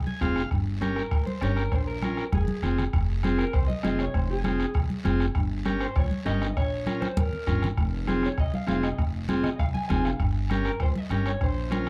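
A dark, slightly broken-up electric guitar with spring reverb carries the melody from 1.0 s in this passionate, danceable F minor cumbia excerpt at 198 BPM, set over a buzzy vintage combo organ that opens with a fill, a woody, growly pizzicato upright bass, thick-skinned damped congas, a soft-beater bombo and a raspy guiro, with drum fills at 2.3 and 6.9 s as Fm, Gdim and Bbm cycle through a small room and a dark, warm production.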